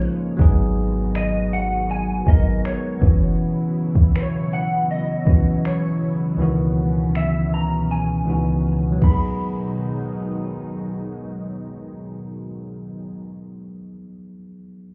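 A smooth, electronic R&B drum kit with a soft kick, crisp hi-hats, finger snaps and crash cymbal sets a straight 80 BPM groove in 4/4, rolling through a fill before it stops at 9.2 seconds, while a deep, boomy 808-style bass sounds only from 0.4 to 3.4 seconds. Over chords in G# minor, a bell-like, bright tine electric piano sits up front, a clean, picked electric guitar carries the melody through ensemble chorus and tape echo, and a lush, thick, detuned unison pad holds sustained chords with chorus, phaser and sidechain pumping. This contemporary R&B fragment feels longing and sensual, heard muffled as if through a wall with a club reverb.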